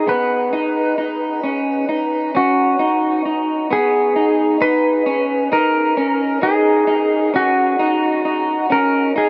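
Hazy and haunting, this 66 BPM dream pop excerpt pairs a clean, twangy lap steel melody, sung through slide and volume swells with tape echo, against slightly broken-up, lo-fi electric guitar arpeggios thick with lush chorus and tape echo, both up front and compressed inside a huge ambient reverb with a dark, rolled-off top end as the harmony moves from B69 to F#5 at 7.3 seconds.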